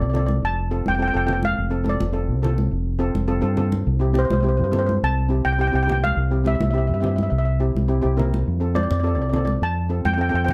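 This sunny, festive calypso excerpt opens with a lead steel pan carrying the melody, close-miked, dry and full, sitting up front with a shimmering, metallic ring from medium rubber sticks. Beneath it, a double seconds pan plays the accompaniment in a lower register, while a fingered electric bass, dark and round, sits up front with a direct, amped tone. Congas enter at 0.1 seconds, medium-tuned and ringing, played with hard hands in a live room. The groove moves at a straight 104 BPM in 4/4, in F major with tuning set to A4 = 438 Hz, and the harmony moves from F6 to C at 3.9 seconds and back to F at 8.5 seconds. A light reverb rounds out the mix through this brief passage lifted from a longer piece.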